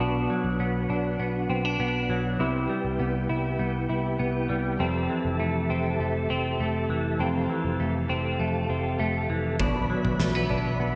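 Dream pop at 100 BPM in F lydian, floating and ethereal, with a clean, hollow-bodied semi-hollow electric guitar playing arpeggios up front through analog chorus and delay, over soft, flute-like tonewheel organ chords turned by chorus vibrato and a slow rotary speaker, and a dark, round picked electric bass. At 9.6 seconds an oversized low-tuned drum kit arrives with a punchy kick, fat snare and toms, gritty and saturated in a pumping stone room with gated reverb, while a glassy harmonics texture drifts in the background at 9.8 seconds on E5. The bright 1980s-style digital production sits in a lush hall reverb, and the chords move from Bm through Cmaj7 and Fmaj7 back to Bm.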